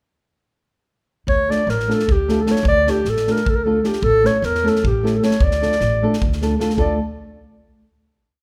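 A moderate recital-hall reverb gives this short, complete Balkan wedding-band piece in 7/8 a roomy, bittersweet and fiery glow. Up front, a dark, classical-style clarinet spins a motif-based solo melody in sentence phrases over Dm, A and back to Dm, while a thumb-plucked nylon-string guitar adds small, close-voiced off-beat chords from 1.5 seconds. A woody pizzicato upright bass on steel strings plays root and fifth on the main beats, and an airy, polished studio drum kit with a punchy kick and a medium-tuned snare plays a two-stick pattern until the piece settles on a final chord at 6.8 seconds.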